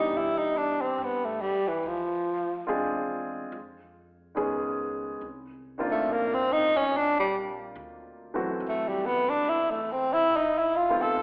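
A jazz ballad at a slow 71 BPM in 4/4 with a gentle swing on the eighth notes, this short extract carries a romantic, tender mood. A breathy tenor saxophone takes the melody as a solo throughout, sitting up front with a mellow, whispered tone, soft attack and vibrato that feels close-miked and intimate. An upright piano accompanies it, also up front, with a woody, natural sound. Underneath, a pizzicato upright bass on steel strings plays quietly in the background. The harmony moves through rich chords such as G6, Dm7b5, C#9 and Cm11 before settling on F7#11. The whole is bathed in a recital hall reverb with a church or concert hall ambience, yet filtered to a thin telephone quality.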